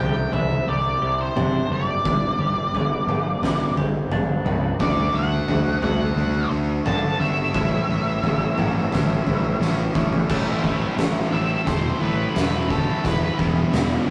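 Brooding and cathartic, this quiet-loud alternative rock excerpt moves at 87 BPM, in a half-time feel through its first section, with an up-front, growly fuzz bass and an oversized, low-tuned drum kit of fat snare, punchy kick and dark cymbals in a bright stone room. A dark octave-fuzz lead guitar carries the melody for nearly the whole excerpt, while a twangy, clean twelve-string electric with harmonic tremolo plays arpeggios in the background until 4.8 seconds, when a compressed, distorted electric guitar riff takes over above chords moving from Cadd9 and G to D and A. After a drum fill, the section turning to Am at 10.3 seconds brings a lead guitar solo and a second fuzz guitar riff in the background, all captured as a rough rehearsal-room recording with tube saturation and light reverb.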